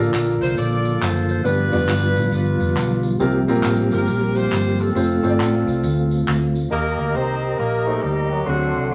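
Reverent and hopeful, this uptempo swung gospel excerpt at 137 BPM pairs a dark grand piano, a soft flute-like tonewheel organ turning through a slow rotary speaker and a round, punchy hollow-body electric bass under a mellow saxophone section melody, with group handclaps and tambourine until 6.6 seconds before a breathy, close-miked tenor saxophone joins the section on the melody at 6.7 seconds over chords moving from Bbmaj7 through G7, C7sus4 and F to Eb.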